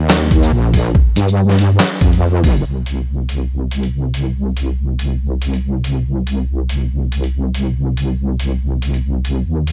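Dark and meditative, this deep dubstep excerpt opens on a drop with a swung, half-time feel, led by an up-front wobble bass that is heavy and saturated, its detuned sawtooth and sine layers thickened with chorus. A sampler-style trip hop kit of handclaps, hi-hat, shaker and a medium-tuned snare sits forward, pitched down and tape-toned, while a thumpy electronic kick plays only from 0.3 to 2.5 seconds. The dry, gritty hardware sound gives the drums a small-room closeness.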